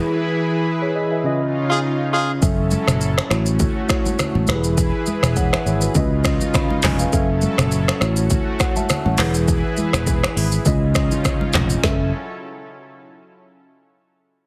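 A sultry, hypnotic afrobeats groove at 102 BPM in 4/4 with a lightly swung sixteenth feel, this cut from a longer piece opens with a mellow tine electric piano and a lush, warbling sawtooth pad with chorus laying down a break and band accent in F# dorian, as a punchy, up-front horn section adds a brief second line from 1.7 seconds. At 2.4 seconds an overdriven afro-pop drum kit with a deep kick, woody snare, metallic hats, snaps, claps, rim clicks, shaker and toms drops in alongside a fingered electric bass, and bright, close congas join in the background at 2.7 seconds, all cycling through E, C#add9, F#m7 and A6. The mix carries light reverb and a heavily compressed, radio-like sheen.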